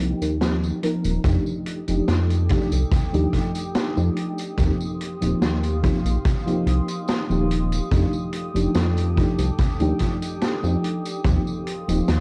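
A glossy, detuned synth bass sits up front in this nostalgic, dreamy vaporwave fragment, its pulse-wave and sawtooth tone tinged with ring modulation, a filter sweep and tube saturation, beneath a soft, round FM electric piano washed in ensemble chorus and analog delay as the harmony sways between Eb69 and F13. A street-band kit of hi-hat, medium-tuned snare and tambourine enters at 0.2 seconds, and a boomy kick joins it at 1.2 seconds, both roughened by vintage 12-bit sampler grit with a rolled-off top. At 1.8 seconds a warbling, lo-fi pad fades in with slow-attack sustained chords, all set in a dark production with light reverb.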